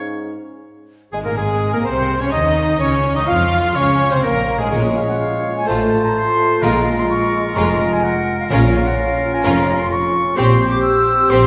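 Bathed in the long reverb of a concert hall, this urgent, stormy excerpt from a fast romantic orchestral movement at 127 BPM in 4/4, shaped with rubato, opens on woodwinds alone: a pure flute on top, a bright oboe, a very quiet clarinet and a mellow bassoon. From 1.1 seconds two violin sections carry the intense, lush melody and a smooth second line over rich violas, dark, distant French horn chords, focused cellos and even double basses. Hard-mallet timpani join at 4.7 seconds as the chords move from Absus2 through Cm and Bbm7 to C7/Bb.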